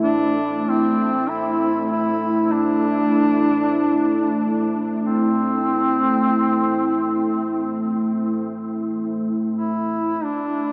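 At a slow 47 BPM in straight 4/4, this ominous, vast dark ambient drone rests on a single A minor chord, with a deep, detuned sawtooth pad carrying sustained chords, its chorus and built-in reverb stretching each slow-attack swell into a long release. Over it, a mellow duduk sings a folk-style melody with vibrato and scooped notes, sounding distant and roomy through tape echo. A huge, wet reverb with an 8.4-second tail surrounds this brief fragment of a longer piece.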